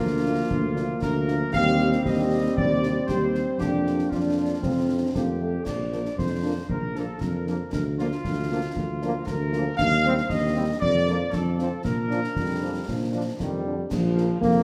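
A festive, proud military-style march for wind band in Bb major at 116 BPM in a straight 2/4, this excerpt from a longer piece sets a dark, soft-attacked trumpet section up front on the melody over sustained chords from a dark trombone section, a mellow tuba bass with light vibrato, background horn accompaniment, and concert bass drum, snare and bright clash cymbals entering at 0.5 seconds, while a clear euphonium slips in a brief second line at 12.4 seconds, all set in a moderate scoring-stage reverb.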